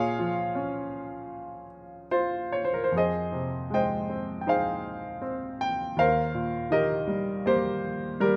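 A clear, smooth grand piano with a vintage tone and short sustain opens this brief, reflective and dark fragment of lyrical classical solo piano in F minor, moving with rubato at roughly 72-84 BPM in 4/4 through Bbm7, Fm7 and Cm7/Eb chords across a range from Eb2 to G5, heard up front through close, detailed microphones with light reverb over its 8.4 seconds.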